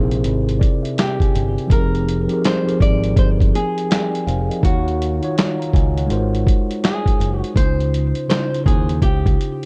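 A swung, laid-back lo-fi hip hop groove opens with bass and electric piano, and at 0.1 seconds a sampler-style drum kit joins: a thumpy kick, a medium-tuned snare, handclaps and hi-hat, all compressed, pitched down and muffled, as if re-recorded in a small room, and sitting up front in the mix. Underneath, a bright, direct picked electric bass holds the low end and drops out at 9.4 seconds. A mellow tine electric piano, clean and heard through built-in speakers, carries the lush chords from C7b13 through Fm11, Ebm9 and Ab13 to Dbmaj9, colored by cassette tape and a low-pass filter. At 1.0 seconds a fingerpicked flamenco guitar enters with the melody, its acoustic tone softened by a low-pass filter and trailed by tape echo, sitting quietly behind the keys. The whole passage has a melancholic, hazy mood, with light reverb and a dark, warm production.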